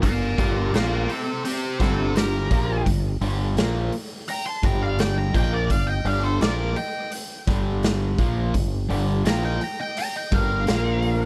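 Smoky and heavy, this short cut from a longer blues rock power trio and southern rock piece moves at 84 BPM in a straight 4/4 in G minor, sitting on Gm before shifting to Bb5 at 10.7 seconds. An overdriven, double-tracked semi-hollow guitar plays the riff up front alongside a growling, overdriven fingered bass and a raw garage drum kit with a punchy kick, gritty saturation and a pumping stone-room sound. Above them, a dark octave-fuzz lead guitar carries the melody through wah, distortion and tape echo, while a nasal lead with a parked wah adds a quieter second line from 0.1 seconds, all in a dry mix with little reverb.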